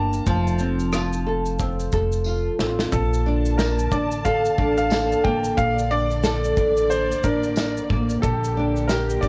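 A homespun cassette recording in a snug booth gives this short cut from a longer acoustic pop piece an easy-going, sunny character, moving at 90 BPM in Bb major with a gentle 16th-note swing. An up-front, fingerpicked nylon-string guitar, double-tracked and touched with plate reverb, carries the classical-style accompaniment, while a woody, pizzicato upright bass sits close beneath it. A clear upright piano sings the melody with polished, long-sustaining notes and audible action noise, coloured by tape, plate reverb and analog delay. A loose indie drum kit with a tight kick, rim click, shaker and medium-tuned snare breathes in a pumping small room, and a jingly tambourine joins distantly in the background from 0.9 seconds. After a drum fill ending at 2.9 seconds, the harmony moves from F to Bbmaj7 and a dark, lush studio string section enters with bowed, vibrato-rich sustained chords and a smooth top, before the progression settles on Gm.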